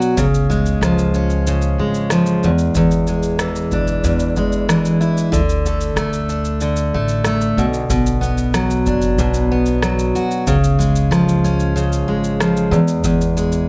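A straight 4/4 groove at 93 BPM carries this easy-going, heartfelt acoustic pop excerpt, where an up-front, full-bodied picked steel-string acoustic guitar provides the accompaniment through C#, E7, D5, Bm and back to C# and E, over a booming analog drum machine with a deep kick, rim click and shaker re-recorded in a large room, while a woody, thumpy pizzicato upright bass joins at 0.2 seconds, all in a dry mix with little reverb.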